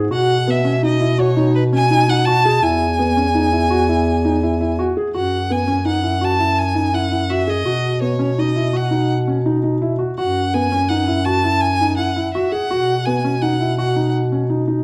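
Hypnotic and urgent, this contemporary chamber piece in 7/4 is cut from a longer work and set in a moderate recital hall with a dark production. A felt-muted upright piano plays soft, boxy arpeggios with audible action noise throughout, beneath a mellow, smooth-topped bass clarinet holding the bass line up front. A clear, evenly bowed solo violin carries the melody with vibrato from 0.1 to 14.1 seconds, over chords moving between B and E with chordless stretches after 5.1 seconds.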